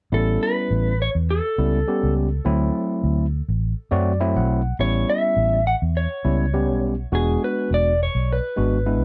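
A dark, slightly broken-up electric guitar through a small old amp carries the melody in this laid-back, swaggering straight-eighth soul blues excerpt at 103 BPM in A mixolydian, backed by a barky, gritty, overdriven tine electric piano that adds a fill from 3.6 to 4.8 seconds and a round, foam-muted vintage fingered electric bass, all up front in a dry sound over A7, D7 and E7 chords.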